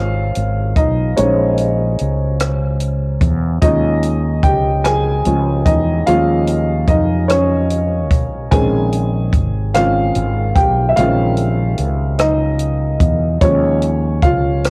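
Late-night and sultry, this is a slow six-eight R&B groove at 49 beats per minute in Bb minor, cut from a longer piece and running just under 15 seconds. A baby grand piano leads throughout, its up-front, natural tone carrying a cassette-tape coloring as it moves between Bbm11 and Eb9sus4 voicings. Underneath, a fretless electric bass sits low and round, punchy and direct, holding the bottom for the full length. A compact cocktail drum kit joins at 0.3 seconds with hi-hat, a tight kick and rim clicks, its sound dry and acoustic. Light reverb and a small-room ambience give the home cassette recording an intimate closeness.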